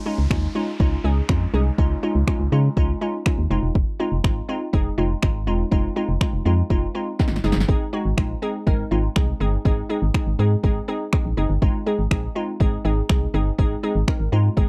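A straight 4/4 pulse at 122 BPM drives this upbeat, summery dance-pop excerpt, where an overdriven deep house kit with a deep kick, punchy snare and finger snaps sits up front beside a hollow, organ-like FM bass and a glassy, crystalline wavetable pluck with chorus and sidechain pumping, while a background downlifter ends by 3.8 seconds, a drum fill arrives at 7.2 seconds, and the chords move from Dbadd9 to Fm7 to Ab in a dry, close 1970s-style studio sound.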